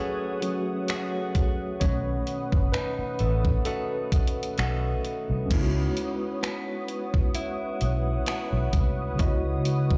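Played back over a big sound system in a bare room with a large studio reverb, this cut from a longer contemporary R&B piece moves at a slow 65 BPM in C# minor with a light 16th-note swing and a sensual, late-night mood. A mellow tine electric piano heard through its built-in speakers carries the accompaniment and takes a solo through 5.5 seconds. Around it sit a smooth, detuned sawtooth pad with chorus, compressed, picked guitar arpeggios recorded direct with spring reverb and tape echo, and a thumpy, gated 80s drum machine of kick, hi-hat, finger snaps and crash that enters at 0.4 seconds, while a dark, round, foam-muted fingered bass sits up front from 1.8 seconds as the chords move from D#m7b5 to B7 before settling on C#m11.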